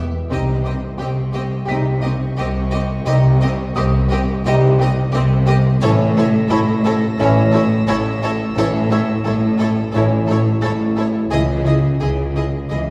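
A cinematic suspense film score excerpt at 87 BPM in 4/4, ominous and eerie, in which lush, vibrato-laden violin sections carry the melody, a second line and a high background texture over a rich viola accompaniment, a focused cello and distant double bass sections on the bass, a ringing thumb-plucked concert harp riff, a very quiet felt-muted upright piano with audible action noise, and a mellow French horn section holding sustained chords from 0.3 seconds, all set in a recital hall reverb as the harmony moves from Cm to A at 5.8 seconds and C#madd9 at 11.3 seconds.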